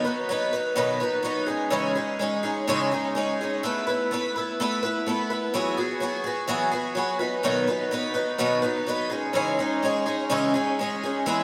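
This rock excerpt has a hopeful feel at 126 BPM in a straight 4/4, and a lone picked twelve-string acoustic guitar plays up front from 0.0 to 11.4 s, moving through B, C#madd9, Asus2 and Eadd9 before circling back. The guitar is bright and octave-doubled, with a boxy body and audible finger squeak, and lush chorus and diffuse ambient delay add shimmer. A wet hall reverb with a 2.8-second tail soaks the whole mix in a dreamy haze.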